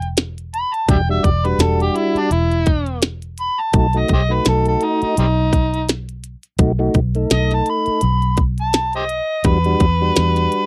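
Straight-eighth soul blues at 84 BPM in E minor, mournful and smoky and cut from a longer piece, where an overdriven, gritty, amplified harmonica takes a jazz-style solo throughout with vibrato, tongue slaps and scooped notes over a dark, round, foam-muted fingered electric bass and a tight, clicky electronic drum kit with its own overdrive, those three sitting up front, while a clean tonewheel organ with key click and slow rotary speaker enters at 0.9 seconds as the chords move from Em7 to B7 and back in a dry, close 1970s-style studio sound.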